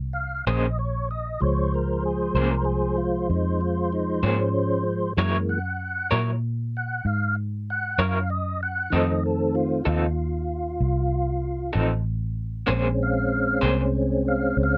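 A mellow tonewheel organ with chorus vibrato and a slow rotary speaker carries dark, clean sustained chords through this brooding, soulful slow blues in Bb minor at 64 BPM in 12/8, backed by a round, punchy, foam-muted electric bass and a slightly broken-up, lo-fi electric guitar with tremolo through a small old amp, all dry and up front as the harmony moves from Bbm9 through Gb7 and F7 back to Bbm9.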